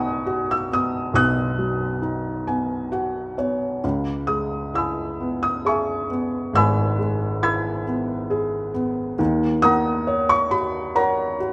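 Melancholic and reflective, this short cut from a longer lyrical classical solo piano piece drifts in rubato 3/4 at 68 BPM in C# dorian, its felt-muted upright piano sounding intimate, boxy and up front with audible action noise, spanning G#1 to G#6, adding a brief fill from 2.0 to 3.8 seconds and moving through G#m7/B, C#m7 and D#m7 inside a moderate scoring-stage reverb.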